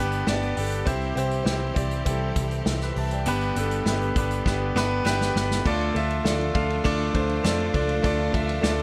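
A brilliant, up-front concert grand piano with deep bass and long sustain drives this short, dramatic and earnest piano-driven pop cut at 100 BPM in 4/4, moving from G through C and back to G before shifting to D minor at 5.7 s, over lush, vibrato-rich strings set in the background under plate reverb, a dark, foam-muted picked electric bass with a round tone, and a distant, roomy acoustic drum kit played with bundle sticks that comes in at 0.1 s with a tight kick, a medium-tuned snare and dark cymbals, and plays a fill from 4.5 s.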